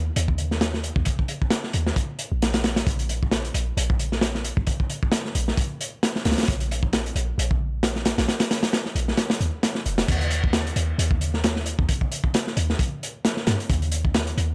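An 808-style bass opens the excerpt, deep and boomy with a sine core, a noise layer and tube saturation, and a crunchy breakbeat kit of punchy kick, medium-tuned snare, hi-hat and dark crash cymbals joins at 0.2 seconds, sitting up front with a small-room, rolled-off character. This raw, gritty breakbeat track swings its 16ths in 4/4, and the kick drops out at 9.2 seconds before the drop arrives at 10.1 seconds. The whole recording is dry and hardware-gritty, colored by transformer saturation.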